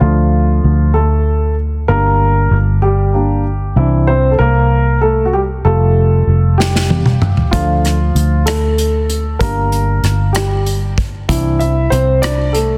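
Dramatic and aching, this six-eight pop ballad in D minor moves at 64 BPM counted in dotted quarters, with a straight feel across a short section cut from a longer piece. A baby grand piano carries the accompaniment and is marked as playing solo throughout, its natural tone and long sustain sitting up front in the middle register. Beneath it, a vintage muted fingered electric bass gives a dark, round, foam-muted low end that is amped and equally forward. An acoustic drum kit with bundle sticks arrives at 6.6 seconds with a fill, bringing hi-hat, a punchy kick, rim click, toms and a medium-tuned snare that carries soft clipping. The chords cycle through Dm, Gm, Cadd9 and Fadd9 before returning to Dm, all in light reverb and a dense, heavily limited modern master.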